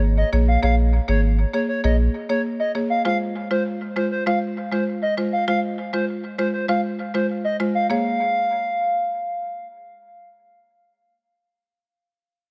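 A hollow, clarinet-like synth lead with chorus, vibrato and analog delay carries the melody over a buzzing, woody marimba, also treated with analog delay, in this sultry, tough dancehall fragment at 99 BPM in Bb minor. A round, deep sub bass anchors only the opening, stopping at 2.1 s, while the chords move from Bbm7 to Fm and back to Bbm7 at 7.9 s. The echo-heavy mix sits in light reverb.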